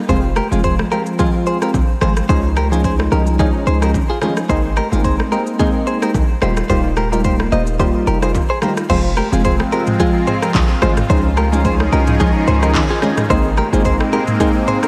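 Smooth and mellow, this afrobeats excerpt in F minor moves at 109 BPM with a light 16th-note swing, as round, chorused analog keys and a bright, clean direct-recorded electric guitar riff with warbly pitch drift and diffuse delay ride over a punchy, heavy 808-style bass, a deep-kicked electronic drum kit with gritty 12-bit crunch, handclaps, rim clicks, shaker and toms, and faint high-tuned congas, until a thick, phased unison pad joins at 9.5 seconds, all bathed in a dreamy hall reverb through chords cycling from Fm to Dbadd9, Abadd9 and Ebadd9.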